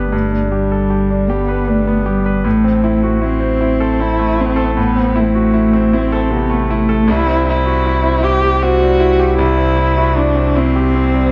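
Moving in a rubato 6/8 at 52 BPM counted in dotted quarters, this short neoclassical piano and strings passage, cut from a longer piece, carries a hopeful, tender mood. A bright concert grand piano supplies the accompaniment across its span from C2 to B4, sounding brilliant and polished with deep bass and an up-front presence. A single muted cello plays the second line between G3 and G4, its con sordino tone dark and veiled, bowed with vibrato, a soft attack and a smooth top. Beneath them, a saturated sub bass holds the low end from G1 to C2, thick and sustained with a fast attack and a triangle-like shape. The harmony moves from G to Am at 2.5 seconds and on to C at 7.1 seconds, and a moderate large studio reverb with a 1.4-second decay surrounds the ensemble across all 11.3 seconds.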